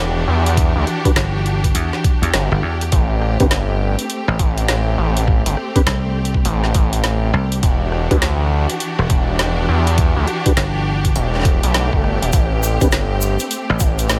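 From the first moment, lush bowed strings holding sustained chords pump over a gritty, nasal sawtooth synth bass in this swaggering, playful glitch hop excerpt at 102 BPM in E minor, swung on the 16ths, where an overdriven drum kit with a woody snare and bright hats arrives at 0.5 s beside a thumpy, pitched-down kick, a soft flute-like tonewheel organ adds stabs through slow rotary, chorus vibrato, 12-bit grit and tape echo, a punchy foam-muted thumbed slap bass joins at 1.2 s, and after a very quiet electronic swell a grainy egg shaker enters in the background at 12.3 s as the chords move between Em9 and Am7.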